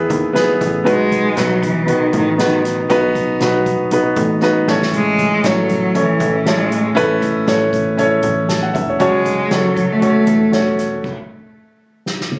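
A clear, polished baby grand piano and a plucky, funky analog bass with a ring-modulated bite open this uplifting, hopeful piano-driven pop excerpt in a lightly swung groove, joined by a distant, roomy soft-mallet drum kit with a punchy kick, while an expressive bowed cello carries the melody up front from 0.9 seconds with vibrato and portamento over E, B, A and F#m chords, before the band stops at 11.0 seconds and a closing drum fill runs from 12.1 to 12.4 seconds, all captured on a phone in a club-like room.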